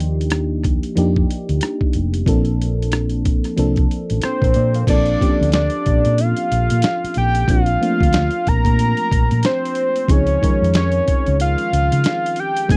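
Relaxed and smooth, this neo-soul R&B excerpt moves at 92 BPM in 4/4 with a loose sixteenth-note swing, settling in Bb major. An FM electric piano supplies mellow, fast-attack chords with a noise layer, moving from Ebmaj9 to Bbmaj9 and later Dbmaj9, while a dark, round hollow-body bass, fingered and amped, anchors the low end. The boom bap sampler-style kit sits up front, pitched down and compressed, with a gritty, tape-warm character, a thumpy kick, a medium-tuned snare, rim clicks, hi-hat and crash cymbal. At 4.2 seconds a fat analog lead enters up front, blending sawtooth and square waves over a sub octave, its sustained notes carrying vibrato and a filter sweep in a high register. The sound is dry and close, like a 1970s studio recording with little reverb.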